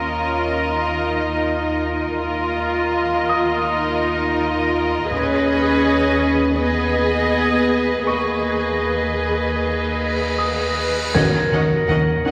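Uneven beats in 4/4 carry this uneasy, mysterious suspense cue, cut from a longer film score. Bowed sul tasto string sections play throughout: two violin lines, one intimate and one floating and distant, sit over violas, cellos and a woody, dark double bass, while a brilliant grand piano with audible action noise rings high in the background and distant, very quiet taiko hits arrive at 5.1 s as the harmony shifts. A huge cymbal swell begins at 9.9 s and a roomy solo clarinet joins at 10.4 s, then at 11.1 s an impact lands with the taiko and a brief mellow French horn chord, followed a moment later by a round, deep analog bass riff with ring modulation, the whole cue set in a concert hall reverb with vinyl crackle.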